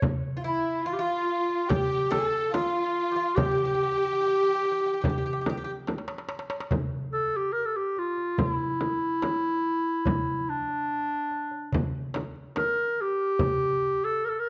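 This excerpt opens with a clear, softly attacked clarinet carrying the melody over darbuka and frame drum, a Turkish makam ensemble piece in G makam nikriz at 72 BPM in a straight 4/4. The clarinet sits up front yet sounds distant and roomy, played in a classical style. The darbuka is crisp, small and high, its metal shell heard close and dry, while the frame drum is played with soft hands. From 0.4 to about 5.9 seconds a bright, metallic bouzouki with picked double strings and a dark, lush violin section, bowed with vibrato and expressive portamento, add a second line alongside the melody. A drum fill at 5.9 seconds leads into a new section at 6.7 seconds, where clarinet and percussion continue on their own. A moderate recital hall reverb and a dark production give the whole a longing, hypnotic mood.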